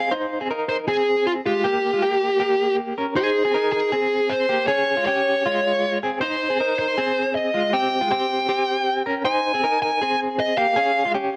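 A dark, overdriven lead guitar carries the melody over a clean electric guitar's compressed, direct-recorded arpeggios shimmering with tremolo, both up front from the opening moment of this short cut from a longer indie pop piece in Ab major at 158 BPM. The straight 4/4 feel and bright, nostalgic mood are colored by cassette-tape grit on both guitars, with tape echo trailing the lead, all set in a moderate booth ambience that gives it a homemade charm. The lead drops out at 11.1 seconds, leaving the picked arpeggios to ring on briefly until 11.4 seconds.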